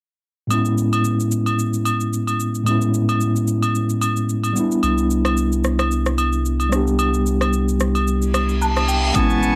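A swung sixteenth-note amapiano groove at 111 BPM in A major sets a soulful mood, driven by a knocking electronic kick, rim click and shaker alongside agogo bells and woodblock, while a mellow tine electric piano with cassette-tape color holds the chords up front, moving from Amaj9 to Cmaj9. A deep, round analog bass enters at 4.8 seconds, and near the end the kick drops out as the electric piano plays a fill over a reverse cymbal that lands on an impact at 9.2 seconds. In that same moment a reedy, airy accordion arrives with sustained chords, sidechain pumping and tape grit, all within a lightly reverberant, homespun cassette sound in this short cut from a longer piece.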